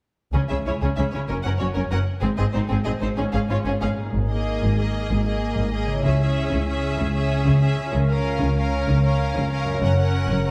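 Bowed strings open a soaring, adventurous cinematic cue at 126 BPM in 12/8, with a clear, intense violin melody over a smooth second violin line, rich viola accompaniment, an expressive cello section and an up-front double bass section, all lush with vibrato in a moderate scoring stage reverb. A ringing, fingerpicked concert harp enters at 4.0 seconds with arpeggios in the background as the passage builds through chords such as Dbm, Absus2 and Gb, in a fragment cut from a longer piece.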